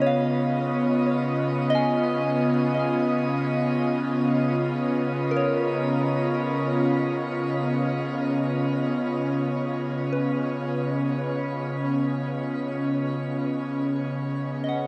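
Ambient music in free time, this short excerpt from a longer piece feels luminous and warm, centred in Db mixolydian with tuning at A4 = 442 Hz. An airy, breathy pad sits up front through the whole 14.9 seconds, holding sustained chords from Db3 to Eb5 with a full-bodied, detuned tone, a noise layer, ring modulation, slow attack and long release, thickened by chorus. Further back, a soft synth bell plays gentle arpeggios between Bb4 and Ab5, its pure FM tone striking quickly and decaying, coloured by chorus, phaser and delay. The harmony rests on Db7 before moving to Gbsus2 over Db at 13.6 seconds. A shimmering reverb with an 8.1-second tail bathes the sound in a deep, wet space.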